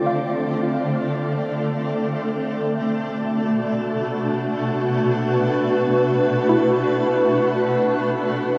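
A granular cloud pad and a soft, round pluck enter together at the start of this short ambient excerpt in free time. The pad's blurred, bright chords sit up front with their own built-in reverb while moving from Dm7 to Bm7 at 2.6 seconds and settling on E7(no3) at 8.0 seconds. Beneath it, the pluck, with chorus and delay, traces arpeggios in the background, its tone dark and gently detuned. The whole passage floats in a vast shimmer reverb and carries the warbling pitch drift of worn cassette tape, leaving a serene, reflective mood.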